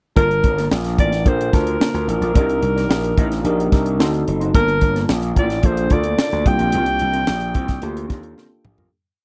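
Dry and close, this short, complete piece has the intimate feel of a 1970s-style studio, with the tight funk drum kit sitting loudest and most forward in the mix. It is polished 1980s jazz-funk pop in a straight four, nocturnal and bittersweet, moving through Gm9, Cm9 and D7b9 before settling on C7sus4. A breathy alto saxophone carries the motif-based melody up front, its vintage subtone tone full of scooped notes in a jazzy solo style. Beneath it, a worn, slightly out-of-tune tine electric piano pushes rootless chords through a lush chorus, adding grace notes and a short fill at 3.7 seconds, while a dark, fingered electric guitar plays crisp sixteenth-note rhythm in the background with an ensemble chorus. A gritty, overdriven slap bass delivers an agile, punchy syncopated line against the drums' high-tuned snare and tight kick. The music fades out from 6.7 seconds, and a drum fill closes it at 8.4 seconds.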